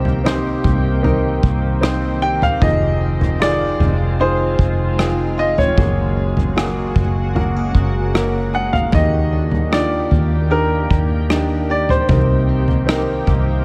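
In a straight 4/4 pulse, this tender, emotional pop ballad fragment pairs a clear grand piano melody touched with tape echo and the open, long-sustaining accompaniment of a warm baby grand with an ethereal, shimmering pad under chorus, background arpeggios from a bright, direct-recorded clean electric guitar with spring reverb and tape echo, a dark, round, foam-muted fingered electric bass sitting up front, and a small-room acoustic kit played with bundle sticks on punchy kick, rim click and toms, all moving through Cm7, Fm7, Gbadd9 and Ebmaj7 in light studio reverb.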